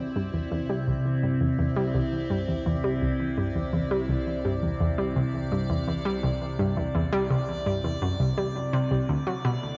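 A nasal, wave-folded analog pluck stands out up front in this hypnotic, cosmic excerpt of sequencer-driven ambient space music, playing a riff from 0.2 to 9.5 seconds with chorus and analog delay at a straight 84 BPM in 4/4. Alongside it, also up front, an evolving wavetable pad sustains bright, morphing chords through a phaser and its own reverb, moving from Cadd9 to Bm7 at 9.1 seconds. A round, deep analog bass sits dark in the background on a low C, fading in across the whole passage. A moderate plate reverb and a dark, warm production give the piece a spacious sound.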